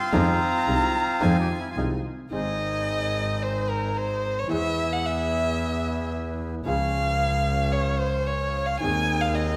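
The sound sits in a moderate scoring-stage reverb, with the bowed double bass, violin and lead bandoneon close and up front, joined by a piano, while a second bandoneon sits further back. This sultry, dramatic tango fragment, cut from a longer piece, moves with a rubato feel in 4/4. A reedy, dry bandoneon carries the melody only briefly, stopping at 1.8 s, while a violin plays a second line with vibrato, portamento and a soft attack. From 2.3 s the violin takes an expressive solo over a vintage-toned grand piano with deep bass and a smooth accompaniment. A biting, nasal, earthy double bass bowed with light vibrato anchors the low end, and the background bandoneon adds full-bodied stabs. The harmony moves from Fm7 through Ab, E and Db before settling on Ab/Eb.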